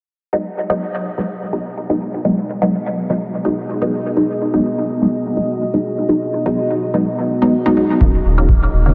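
A 125 BPM groove in 4/4 with a gentle swing on the sixteenths sets the pace for this meditative, cavernous slice of dub techno in G# minor, cut from a longer piece. A filtered chord stab opens at 0.3 s, its detuned sawtooth tone muted yet bright, plucked short by the filter and sitting up front, colored by phaser, dub echo and a filter sweep that runs through the whole passage. At 2.1 s a deep, moody ambient pad rises underneath on a slow attack, a dark, detuned blend of sawtooth unison, sine and sub octave with chorus and its own reverb, breathing with sidechain pumping alongside the stab. The harmony rests on G#m7 before moving to D#m7 at 8.0 s, where a round, soft sub bass with tube saturation and an analog, tape-warm electronic kick re-recorded in a large room both arrive. Huge reverb with a 4.5 second tail soaks the mix, giving it a dreamy, submerged depth.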